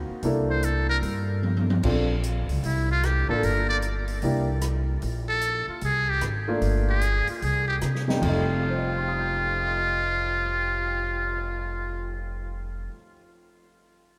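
A buzzy, metal-muted trumpet with light vibrato and scooped notes carries the melody in this relaxed, sophisticated small-group swing jazz at 150 BPM, over woody pizzicato upright bass, an intimate concert grand piano with audible action noise, and an acoustic drum kit with dark cymbals, a boomy kick and a fill at 1.4 seconds, the ensemble set in a vast, echoing cathedral space.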